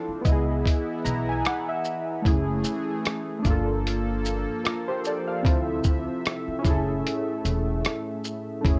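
Reflective and melancholic, this lo-fi hip hop excerpt moves at 75 BPM in 4/4 with a swung sixteenth-note feel, cycling through minor ninth chords from C#m9 to F#m9, Gm9 and Dm9. Up-front warbly synth keys with a detuned, nostalgic character and chorus carry the accompaniment and play a fill at 0.7 seconds, while a smooth analog pad with chorus and tremolo holds sustained chords beneath and a woody pizzicato upright bass anchors the low end. A muffled, compressed sampler-style drum kit of thumpy kick, rim click, hi-hat and shaker sits up front in light reverb, and the music drops into a break at 7.1 seconds.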